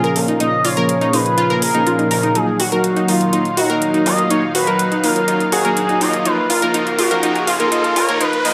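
A smooth, nasal synth lead with subtle chorus and digital delay carries the melody over a chorused, warbling vintage pad, a round analog pluck arpeggio, mellow low-pass-filtered supersaw stabs under a filter sweep, and metallic layered hi-hats in this dreamy, expansive progressive house build-up at 123 BPM in Eb minor, with a fat, saturated analog bass entering very quietly at 0.2 s and a faint riser entering at 5.8 s, all set in a wet digital room reverb.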